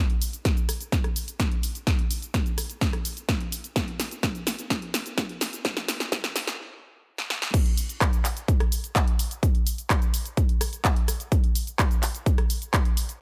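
A punchy electronic kick drives this triumphant, euphoric EDM excerpt at 127 BPM in a straight 4/4. Beside it, a layered big-room dance drum kit with a punchy snare, cabasa, crash cymbal, handclaps, hi-hat and rim click sits up front through a build-up of drum fills and a filter sweep, with a stop at 6.6 seconds before the drop lands at 7.5 seconds. The dry, high-pass-filtered mix keeps the percussion tight and close.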